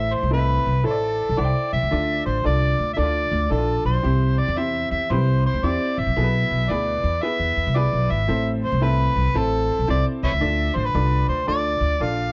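A dark studio sound with light reverb frames this driving, urgent excerpt of uptempo 1960s-style soul at 113 BPM in A minor with a swung feel, where an amplified, gritty harmonica plays a jazz-style solo up front with tongue slaps, scooped notes and light vibrato over a clear, worn, slightly detuned upright piano and a woody pizzicato upright bass, moving through Am, Dm, C and E/B.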